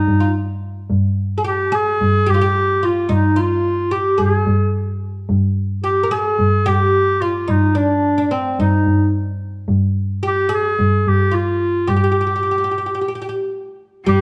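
Light reverb surrounds this passionate, festive Arabic maqam ensemble, where a distant, roomy clarinet in classical style sits up front as the solo melody voice. A bright, woody, fretless oud with double strings, plucked with a plectrum, carries a second line, while a bowed double bass stays on G2 with vibrato, portamento and a smooth top. After a break from 13.0 seconds, a biting, nasal cello with light vibrato enters at 14.1 seconds just as this passage, cut from a longer piece, ends.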